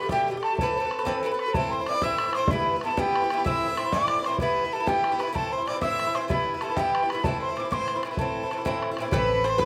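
A chiffy, hollow wooden whistle carries the melody of this spirited, dark Celtic jig in A minor at 126 BPM, accompanied by a focused fiddle second line over up-front, metallic double-strung bouzouki and a tight, damped bodhran, with a twangy banjo and woody pizzicato upright bass joining at 9.1 s, all captured in a dry open-air recording.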